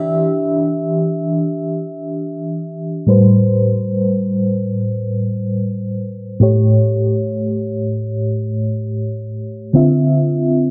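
Longing and late-night in feel, this brief R&B fragment in free time features a solo FM electric piano with tremolo, its dark, full-bodied tone carrying a noise layer and a fast attack that decays, set up front in a moderate concert-hall reverb behind a low-pass filter that begins sweeping at 3.1 seconds as the harmony moves from Em7 through Am9 and A7 to Dm9.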